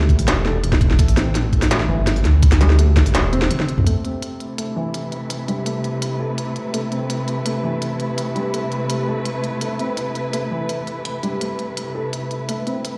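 Tense and spacious, this half-time drum and bass passage is cut from a longer piece and opens on a drop. A deep, detuned wobble bass with chorus sits up front beside a knocking, layered electronic kick that stops at 3.0 seconds. Meanwhile an industrial drum kit brings a clanging snare, crisp hats and toms in a small room reverb. Throughout, a felt-muted upright piano plays intimate arpeggios, its mellow tone passed through a low-pass filter and digital delay, with audible action noise. A drum fill arrives at 3.5 seconds, and at 3.9 seconds the bass drops away as a dark, woody cello section enters with lush, bowed sustained chords carrying vibrato, sidechain pumping and a filter sweep. The whole piece sits in a large studio reverb, as if played on a big sound system in a bare room.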